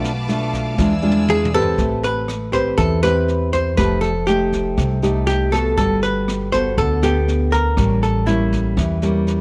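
Melancholic and wistful, this bossa nova excerpt in A minor moves at 120 BPM in a straight 4/4 feel. A fingerpicked nylon-string guitar carries the accompaniment up front throughout, its dark classical tone marked by audible finger squeak, while a woody, thumpy upright bass played pizzicato anchors the low end. A jazz kit played with brushes sits back in a small room, with a boomy kick, a high-tuned snare, rim clicks and toms, its sound smooth and rolled-off on top; a drum fill arrives at 0.8 s. For the opening 1.8 s a bright, lush symphonic violin section holds bowed chords with vibrato over a Bm7b5 to E7b9 turn, alongside a hollow-body jazz guitar solo. From 1.3 s a clean, compressed, picked archtop guitar, miked and amplified, takes the melody up front, singing over rich harmonies that move from Am9 through F9 and Gmaj9 to A7b9, all bathed in light reverb.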